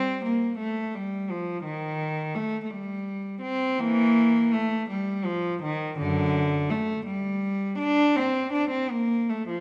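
A single bowed cello with a rich, reedy gut-string tone sits up front in a wet recital-hall reverb, playing a flowing, serene baroque-style suite movement in 6/8 at a rubato 55 BPM in dotted quarters, period in style, across this brief 9.6-second passage cut from a longer piece.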